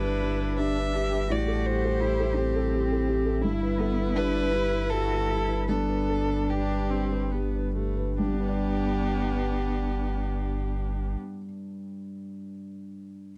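Neoclassical piano and strings in G major, this short piece taken from a longer work moves in a rubato 3/4 at around 70-85 BPM with a tender, hopeful mood, easing into a slowdown between 2.4 and 8.2 seconds. A dark, smooth solo violin carries the melody up front with vibrato, while a woody, distant cello shapes a second line beneath it and a rich, close viola fills in the accompaniment. A felt-muted upright piano with thick felt and audible action noise gives a mellow, intimate, vintage character, and it is the last part sounding, playing alone after the others stop near 11.2 seconds until 13.3 seconds. Underneath, a very quiet chorused pulse-width pad holds shimmering, retro sustained chords, and a pure sine sub bass sits deep, clean and up front. The chords move from G through Am7 and Em/G back to G, and the whole piece has a dry, close 1970s-style studio sound with little reverb.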